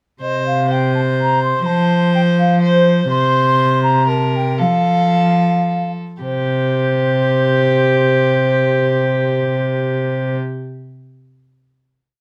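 Close, detailed microphones and a light reverb frame this short, rustic and solemn renaissance-style consort dance in 3/4, moving at 106 to 126 BPM before slowing from 2.4 s and settling on a final chord at 6.2 s. An airy, wooden baroque flute carries the tongued, expressive melody with vibrato, set back in the room, while a nasal, reedy violin with gut-string tone and light vibrato plays sustained chords in the rhythm of the tune as a second line. Up front, a dark cello bows a smooth, sustained bass in period style.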